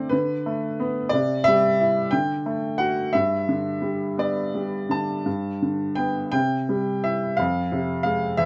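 Wistful and melancholic, this lyrical classical fragment for solo upright piano, cut from a longer piece, moves in 6/8 with uneven, rubato beats. The piano sounds clear, woody and natural, sitting up front under close, detailed microphones with light reverb, ranging from E2 to A5. The harmony drifts through C, D and G before darkening onto F minor at 7.4 seconds.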